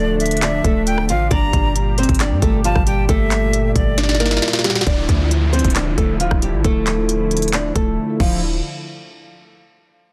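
This trap-leaning hip hop excerpt in D minor opens with a woody, fingerpicked nylon-string guitar melody heard through a low-pass filter and delay. Alongside it are an airy, close-miked jazz flute playing a tongued second line with vibrato, and a warbling, detuned analog pad holding sustained chords under subtle chorus. A deep, boomy 808-style bass with a sine tone and fast attack fills the low end, and the trap drum kit enters almost at once at 135 BPM in a half-time feel. The drums sit up front, with a hard-clipped kick, sharp snare, crisp hi-hats, handclaps, rim clicks and crash cymbal, as the harmony moves between Dmadd9 and Gmadd9 in a hard-hitting yet eerie mood. A drum fill leads into a second section at 4.9 seconds, where the flute has dropped out and an electronic downlifter and filter sweep join the guitar, pad and bass. The drums mute at 8.0 seconds just before the chords end, all within a dry, dense, heavily limited modern master.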